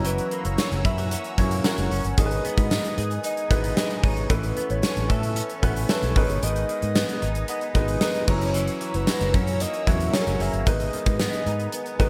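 A straight 4/4 pulse from a punchy, gated 80s drum kit of kick, snare, hi-hat, crash and tambourine, sitting up front with a grainy tube shaker barely audible beneath, drives this urgent, nostalgic 1980s-style pop excerpt, where a round, foam-muted fingered bass, an intimate grand piano with audible action noise, a compressed clean electric guitar riff with ensemble chorus and echo, a swirling phased analog pad in the background and a soft octave-layered synth lead with vibrato and chorus carrying the melody all bloom in a lush hall reverb that gives a big arena sound.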